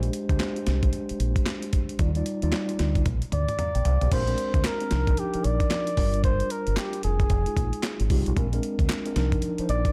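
New jack swing R&B moves at 113 BPM with a punchy, bouncy 16th-note swing, in a short section cut from a longer piece. A gritty, compressed breakbeat kit sits up front with a thumpy kick, a medium-tuned snare, handclaps, hi-hat, toms and crash, and a drum fill leads into the second section at 4.1 seconds. Underneath, a dark, round fingered electric bass holds the low end while a mellow tine electric piano, heard through its built-in speakers, colours chords such as Bb13, Ebmaj9, Cm11 and Fm9. At 3.3 seconds a bucket-muted trumpet enters up front with a veiled, breathy jazz solo that has a smooth top. A very quiet, crisp group handclap from a small room joins in the second section. The mix has digital ambience and a faint mains hum.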